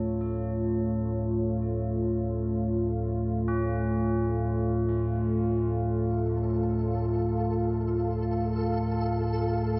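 Soaked in plate reverb, this dreamy, cavernous fragment of dark ambient drone feels unsettling from its first second. A deep, ominous, rumbling drone with a warbling vintage tone sits up front under a filter sweep, alongside a moody, full-bodied analog pad in chorus that holds sustained chords, while softly struck tubular bells ring solemn, metallic arpeggios through an analog delay far back in the mix. At 6.3 s a grainy, flickering texture fades in on a single mellow pitch and lingers to the end.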